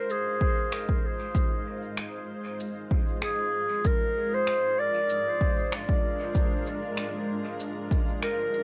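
A punchy, overdriven electronic kick with electronic shaker and finger snaps sets a straight 96 BPM 4/4 pulse in this deep, spacious ambient dub fragment, where a soft-attacked, distant clarinet plays a classical-style melody trailed by dub echo over a blurred, evolving granular cloud pad that fades in beneath it, the harmony moving from Fm7 to Bb7 at 3.9 seconds, all caught as a lightly reverberant home cassette recording.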